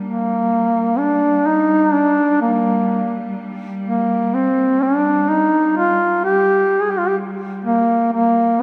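Free-flowing and rubato in a slow 4/4, this brief, solemn Caucasian folk lament sets a mellow duduk melody, up front with soft attacks, vibrato and scooped notes, over a rich, focused cello section drone bowed on G3 with lush vibrato, both heard throughout the 8.6 seconds and bathed in the long, wet reverb of a church.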